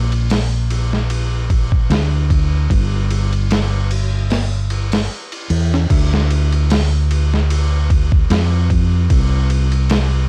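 Trip hop with a melancholic, cinematic mood, built on a lightly swung groove from a fingered electric bass and a dusty, sampler-style drum kit, heard as a short cut from a longer piece. The bass sits up front with a dark, round, punchy tone, while the overdriven, compressed drums bring a gritty character, a thumpy kick, a medium-tuned snare, hi-hat, ride and crash, all colored by cassette tape saturation. The kick drops out between 4.3 and 5.9 seconds before the second section begins, and the whole track carries light reverb and vinyl crackle, like a home recording made on cassette.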